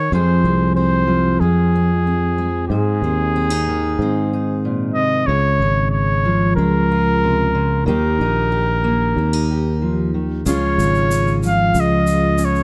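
Closely miked with light reverb, this pastoral acoustic folk excerpt sets a clear, classical-style flugelhorn melody up front over full-bodied fingerpicked steel-string dreadnought guitar and a growly, direct sustaining fretless electric bass, with a grainy egg shaker joining softly at 10.5 seconds.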